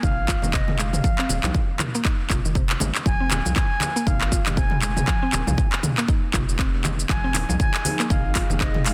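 A pure, straight-toned concert flute carries the melody through this earthy, driving afro house excerpt at 119 BPM in F minor, roughened by vintage 12-bit sampler grit and tape echo over a punchy, up-front electronic kick and metallic-hatted house kit with handclaps, shaker and toms, ringing congas in the background, a round, saturated analog bass pumping under sidechain, a woody, chorused mallet-like synth pluck playing filter-swept arpeggios, and an ethereal, airy pad that enters at 7.5 seconds with sustained chords, the excerpt itself opening on an Fm7 chord.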